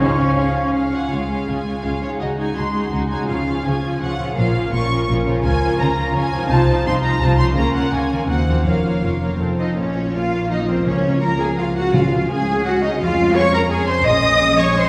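In a flowing triple metre, this restless, dramatic classical excerpt opens with a brief chord from flute, oboe, clarinet, bassoon and a hard-mallet timpani stroke before settling into lush bowed strings, two violin sections carrying the vibrato-rich melody and a darker, more distant second line over rich violas, a focused cello section and smooth double basses. A mellow harp rings out arpeggios in the background as the harmony turns from major to minor, and the timpani returns at 10.9 s to underline the closing section. The ensemble sits back in a reverberant scoring stage, giving the strings an enveloping, cinematic sheen.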